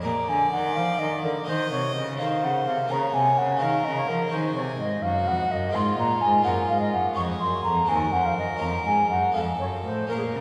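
A flowing, grave baroque-style sonata movement in Bb minor at 84 BPM in a straight 6/8 opens with a pure, wooden flute carrying the prominent second line with vibrato and a soft attack, a close, reedy gut-string violin singing the melody, a brilliant French-style harpsichord filling the continuo, and a nasal period cello anchoring the bass, all bathed in a church's long, wet reverberation.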